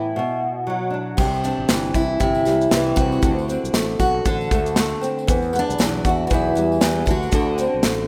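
This short cut from a longer acoustic pop piece has a rough home-demo sound, set in a lush hall reverb, with a reflective, wistful mood at 117 BPM in 4/4 and a light sixteenth-note swing. An up-front, double-tracked nylon-string guitar opens the piece, fingerpicked in a classical style with audible finger squeak. Alongside it, a full-bodied dreadnought steel-string guitar picks the melody between D4 and A4, trailed by tape echo. At 1.2 s a growly, bright fretless electric bass arrives with a direct, amped tone, together with a polished, airy drum kit featuring a punchy kick, a medium-tuned snare, shaker and crash, plus a jingly, very quiet tambourine. The harmony moves from Bm through C, D7 and Emadd9 before returning to D7, and the music carries on to 8.1 s.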